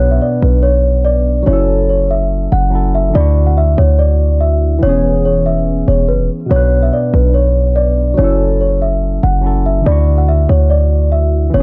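Trap hip hop in a dark, brooding half-time feel at 143 BPM in B dorian, where a delicate, bell-like celesta melody with digital delay sits up front over a barky, clean tine electric piano through a combo amp with phaser, and a punchy, heavy 808-style bass with a fast attack and a noise layer anchors the progression from Bmadd9 through F#m7, Dadd9 and E6, all set in a small-room ambience with light reverb and a dark, warm production across this 11.6-second excerpt cut from a longer piece.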